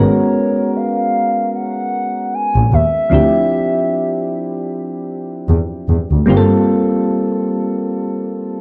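Contemporary R&B at a slow 76 BPM with a swung, longing late-night mood, this short excerpt sets a hollow, woody clarinet-like synth lead with chorus, vibrato and portamento over round, chorused electric-piano-like synth keys and a veiled, bowed double bass with vibrato, moving through Abm11, Dm11 and Gm11 in a small room coloured by the warbly pitch drift of worn cassette tape, the lead stopping at 5.1 seconds and the bass at 6.4 seconds while the keys carry on to 8.6 seconds.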